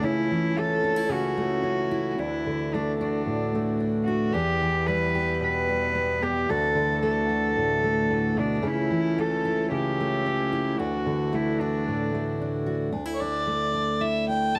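Acoustic folk in D major at 112 BPM, peaceful and nostalgic, opens with a pure, floating bowed cello carrying a sul tasto solo over fingerpicked steel-string guitar with full-bodied dreadnought tone and audible finger squeak, while a breathing, mellow pedal harmonium holds sustained chords in the background until 12.9 seconds; the cello drops out at 12.4 seconds and a nasal, gut-string fiddle takes the melody from 13.1 seconds, all captured by close, detailed microphones with light reverb in a cut from a longer piece.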